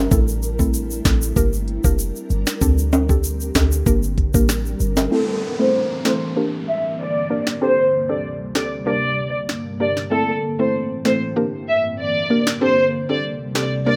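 Dancehall at 96 BPM with a hypnotic, tough mood, this rough home-demo clip cycles through Am, Gm and D7sus4 as a knocking electronic afro-pop kit with sharp snare and smooth hats sits beside a woody, sidechain-pumping FM mallet pluck, while a deep, boomy sine 808 bass and a ringing, dry egg shaker and timbales stop at 5.1 seconds, when a lush, vibrato-rich symphonic violin section takes the melody, an electronic downlifter passes, and a filter sweep runs to the end under light digital reverb.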